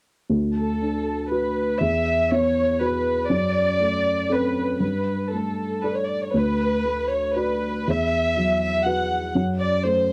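A mellow, woody upright piano opens at 0.3 s with accompaniment ranging from low D2 to D5, and a dark chamber violin section enters at 0.6 s with a bowed, vibrato melody between A4 and F#5. This neoclassical piece for piano and strings is hopeful and tender, moving in 3/4 at 120 BPM with a rubato feel in D major, cycling through D6, Esus2, D7/F# and Gsus2. Both parts sit up front in a dry, close, 1970s-style studio sound, and this fragment is cut from a longer work.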